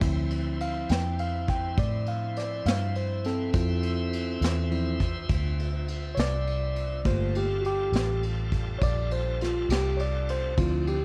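Soulful and brooding, this slow blues excerpt in 12/8 moves at 68 BPM in D minor, shifting from Dm7 to Gm7 at 7.1 seconds as a barky, gritty overdriven tine electric piano takes a solo, up front with plate reverb. Beneath it, a shouting tonewheel organ holds sustained chords through a slow rotary speaker with key click, while a round, foam-muted fingered bass and a brushed drum kit with dark cymbals and a punchy kick carry the groove. Light reverb and a faint mains hum lend the room a vintage air.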